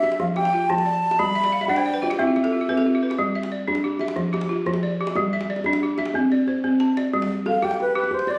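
Captured on a phone in a moderate recital hall with compression and added reverb, this flowing, hypnotic piece of West African string and xylophone music moves in a straight 12/8 at 121 BPM in G mixolydian, taken from a longer performance. A woody, buzzing balafon struck with hard rubber mallets sits up front, running arpeggios throughout with a fill from 1.4 to 3.2 seconds, while a pure, reedy baroque flute with vibrato and tongued notes carries the melody until 3.0 seconds and returns at 7.5 seconds. Further back, a tight, cracking djembe played with soft hands has a vintage, band-limited tone and breaks into a fill from 6.3 to 7.1 seconds.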